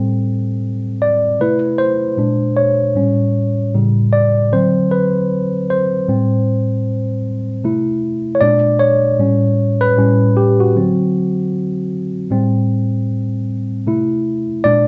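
Sensual and soulful, this R&B cut moves at an unhurried 77 BPM in 4/4 with a 16th-note swing, carried entirely by a solo tine electric piano spanning A2 to D5. The piano sounds worn and slightly out of tune yet clean and direct, sitting up front in a wet, large studio room where it was captured live. It circles through Am7, C6, Bb9, A7 and D7, then repeats the cycle with a Bb7 in a second passage from 7.6 seconds, before the fragment ends on C6 at 13.9 seconds.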